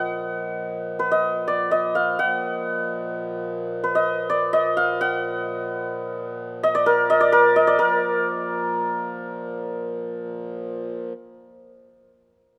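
Radiant and serene, this short Hindustani classical passage in raga bhairav on Bb moves in 3/4 at about 129 BPM and gradually speeds up, with its tuning set to A4 = 444 Hz. A bright, shimmering santur carries the melody up front, its ringing hammered tone sitting over a reedy, mellow pedal harmonium drone that breathes in a low register beneath it. The piece shifts into a new section at 7.8 seconds, and the light studio reverb and rough home-demo sound give it an intimate, informal feel.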